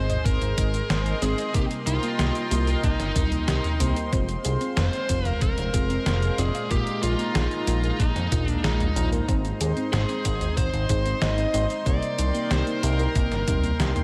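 A bluesy, overdriven lead guitar carries the melody through this nocturnal, cinematic synthwave excerpt in C minor at 93 BPM, its dark, distorted tone trailed by analog delay over a fat, nasal analog bass that sits up front and pumps with the sidechain alongside a smooth, sustained pad. A soft round pluck spins arpeggios and a warbling, vintage FM electric piano adds stabs in the background, while a detuned 8-bit drum machine with hi-hat, shaker, snare and toms joins at 0.1 seconds and a thumpy electronic kick at 0.3 seconds. The chords move through Ab, Cm7, Fm and Bb7sus4, and the whole mix is dreamy and soaked in plate reverb.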